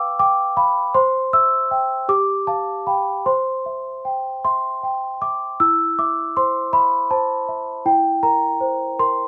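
A slow 6/8 pulse carries this short classical lullaby excerpt, cut from a longer piece, for solo celesta, innocent and dreamy in mood. The celesta sits up front with a bell-like, sweet yet dark tone from medium felt hammers, moving between E4 and E6 over simple harmony that settles on C before shifting colour at 5.6 seconds. Light reverb softens the sound around the single instrument.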